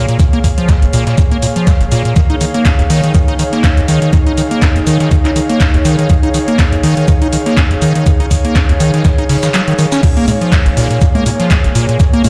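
A swung 4/4 groove at 122 BPM drives this gritty acid house cut, where a thumpy, up-front electronic kick, re-recorded in a small room, drops out from 9.5 to 10.0 seconds alongside metallic analog hats, congas, crash and handclaps from the drum machine, a very quiet, overdriven sampler-style kit adds hi-hat, shaker and a medium-tuned snare, a squelchy, resonant square-wave acid bass riff with tube saturation, chorus and sidechain pumping sits up front, and a breathy, detuned pad with slow attack and long release floats over Bbm7 and Eb7(no3) chords in a large, reverberant room.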